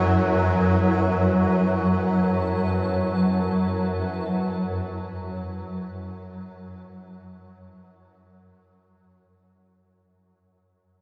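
A swarming, tense drone sits up front from the first moment, sounding together with a blurred, full-bodied granular cloud pad whose sustained chords fade out over the opening 9.8 seconds and with a barely audible bronze singing bowl ringing with slow, metallic beating, the whole ominous dark ambient fragment steeped in a huge, cavernous reverb and a warm production.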